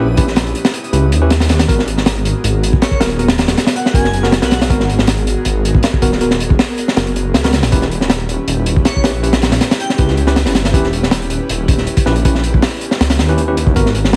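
Drum and bass with a jungle feel at 159 BPM in G# minor, this atmospheric, nostalgic excerpt opens on a reversed, granular swell that fades by 1.7 s as a crunchy, gritty breakbeat kit with a punchy kick and high-tuned snare drives up front beside a thick, menacing detuned saw bass. Behind them, an airy, breathy pad holds chords under chorus, a clean tine electric piano plays stabs through dub echo, and a soft, dreamy lead with phaser, vibrato and cassette-tape colour surfaces briefly from 2.8 s. The whole mix carries a heavily compressed radio sound with vinyl crackle, moving between D#7b9b13 and G#m9 harmony.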